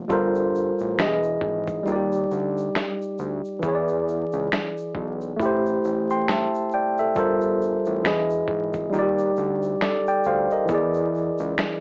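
Reflective and hazy, this lo-fi hip hop excerpt moves at a relaxed 68 BPM with a swung sixteenth-note feel, as an up-front, clean tine electric piano carries chords such as Gm11, Emaj7 and E7 through cassette tape and a low-pass filter. A fat, thick sawtooth bass with detuned, decaying notes and a filter sweep sits beneath a gritty, compressed sampler-style drum kit of finger snaps, thumpy kick and medium-tuned snare, with hi-hats muted throughout, while a grainy egg shaker stays in the background. The whole recording carries worn, warbling tape, warbly pitch drift, vinyl crackle and a small-speaker sound in a modest small-room reverb.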